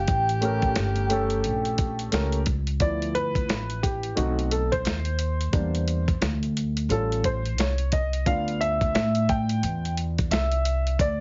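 Cool and mellow, this jazz-hop fragment from a longer hip hop piece sways at 88 BPM in D dorian, with a thumpy, gritty sampler-style drum kit and a woody pizzicato upright bass up front throughout. A ringing vibraphone with soft mallets and slow motor vibrato carries the melody over a subtoned, scooped tenor saxophone line, both only until 2.0 seconds. A dark, intimate grand piano with audible action noise accompanies from 0.4 seconds and takes a solo from 2.8 seconds over the chord changes, all set in light reverb and a heavily compressed, radio-like band-limited sound.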